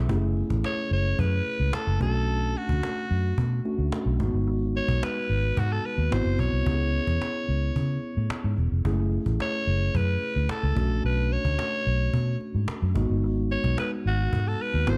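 A mellow tine electric piano with a subtle chorus and a round, foam-muted fingered electric bass open this bittersweet, urban slice of polished 1980s jazz-funk pop, set at 110 BPM in F# minor. A woody cajon with faint snares joins at 0.1 seconds, and a raspy, gritty alto saxophone takes the lead at 0.7 seconds over chords such as F#m9, Bm9 and G#7alt. The punchy bass sits up front in a dark, small-room production, while the edgy saxophone stays present above the clean keys.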